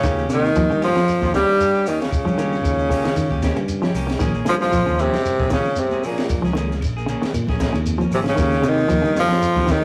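A breathy, vibrato-laden tenor saxophone carries the melody up front in this driving, hypnotic afrobeat excerpt, shadowed by a whispered bass trombone and a gritty, raspy second tenor in the background, while a clean electric guitar picks arpeggios, a bright semi-hollow guitar adds spring-reverb stabs, a growly fingered electric bass punches underneath, and a dark, compact cocktail kit with a high-tuned snare joins grainy shekere, faint woody claves, and thin-skinned congas that enter at 4.2 s, all captured in a rough, saturated rehearsal-room sound.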